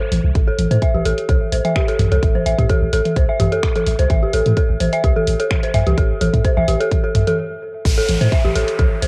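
A dark, detuned synth bell opens this short cut from a longer minimal techno piece, playing an eerie, inharmonic FM riff that decays into a long release, softened by chorus, a low-pass filter, analog delay and cassette tape grit. Almost at once a deep, sine-based sub bass arrives with a pitch-drop attack. Both the bell and the bass are shaped by sidechain pumping. The groove runs at 128 BPM in 4/4 with a light swing on the 16ths in A minor, anchored by an up-front, layered electronic kick and a house kit of finger snaps, bright hi-hats and ride cymbal, plus overdriven analog electronic toms, all three carrying a cassette tape coloring. The mood is clinical and quirky, set in light reverb with the feel of a home cassette recording. After a stop at 7.4 seconds, the drop lands at 7.9 seconds, where an electronic downlifter enters and carries through to the end alongside the rest of the arrangement.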